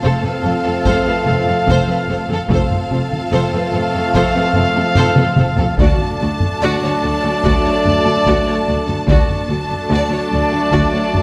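A majestic, triumphant orchestral film cue at 73 BPM opens with lush bowed violins singing the melody over a second violin line, focused violas, a sustained string section, mellow distant French horns and dark, tight trombones. Bright trumpet stabs ring out above, while woody double basses and soft-attack cellos anchor the bass. Heavy-sticked taiko drums enter at 0.9 seconds and play a fill from 5.0 to 5.8 seconds, after which the harmony moves from F to D at 5.8 seconds, all set in a moderate concert hall reverb.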